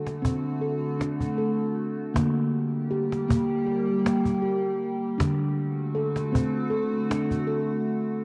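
Meditative and hypnotic, this short cut from a longer world piece moves at 79 BPM in a straight 4/4, tuned slightly low, with a steel tongue drum struck with rubber mallets spinning round, ringing arpeggios over an evolving wavetable pad that holds morphing, triangle-toned chords through chorus, phaser and its own reverb. A cajon played with soft hands adds snappy, close and dry snare-laden accents from 0.1 to 7.8 seconds, while the harmony drifts from D to Gm/D at 2.2 seconds and back to D at 5.2 seconds. The home cassette recording sits in a moderate spring reverb, with all three parts placed up front.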